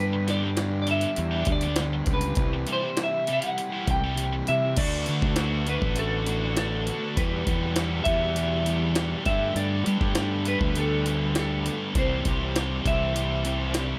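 A steady, straight 4/4 pulse at 100 BPM drives this wistful, carefree indie rock excerpt in G major, carried by a gritty, pitched-up jungle sampler-style drum kit with a thumpy kick, high-tuned snare, hi-hat and crash sitting up front. Just before 4.8 seconds the kick and snare drop out briefly, and then a very quiet string machine with cellos enters, holding soft-attack, sawtooth-toned sustained chords that add a vintage, evolving ensemble shimmer beneath the band. A punchy, fuzz-driven fingered electric bass anchors the low end with overdrive, while two riffing guitars fill the middle: a dark, overdriven semi-hollow guitar bathed in spring reverb and a scooped, high-gain guitar with distortion and lush chorus. Above them, a twangy clean electric guitar with analog chorus picks out the melody. The chords move from G and C through D6, Emadd9 and Gadd9 to Cadd9, all set in a light reverb.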